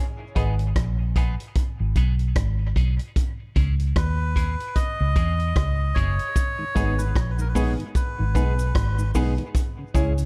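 A dark, warm studio sound frames this hypnotic dub reggae passage, cut from a longer piece, opening with a filter-swept break over a foam-muted, up-front fingered bass, a vintage kit with a punchy kick and rolled-off top playing hi-hat and rim click, and a mellow tonewheel organ turning on a slow rotary speaker in the background. A clean, compressed electric guitar and worn, intimate piano stabs with audible action noise both trail dub echo, moving between G#m and C#m. At 4.0 seconds a reedy, breathy melodica takes the melody through its own echo, and a close, dry cabasa joins at 6.4 seconds as the break ends.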